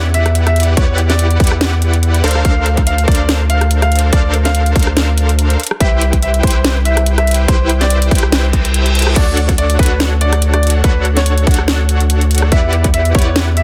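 Deep, saturated sine sub bass and a hard-clipped electronic kick sit up front in this euphoric, bright future bass excerpt at 143 BPM in D major, riding a half-time, swung feel with sidechain pumping on the bass, stab and piano. Detuned supersaw stabs with a filter pluck, 12-bit sampler grit and digital delay carry the riff, while a clear, intimate grand piano with audible action noise and tape echo sings the melody over chords moving from Em9 through Bbmaj9/D, Cmaj7 and Dmaj7. A trap kit adds a sharp snare, metallic hats, rim clicks and crash, and a reverse cymbal sweeps in at 8.5 seconds, all inside a dense, heavily limited modern master.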